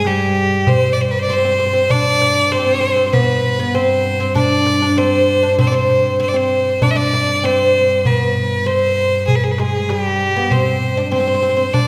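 A bright, intense violin opens this soulful, longing Turkish makam ensemble piece in G makam hicaz, sounding together from the first moment with an oud, a cello and a darbuka. Cut from a longer piece, it moves at 98 BPM in a straight 4/4 and runs for 11.9 seconds. The violin sits close and up front, carrying the melody with vibrato and an airy bow, while the fretless, plectrum-plucked oud adds a woody, deep second line from its double strings. Beneath them, a single cello holds a rich, smooth, even drone on G2 with vibrato, placed distant in the mix. The darbuka's clay shell and natural skin give a close, dry percussion part, all set in a church or concert hall with a wet, lingering reverb.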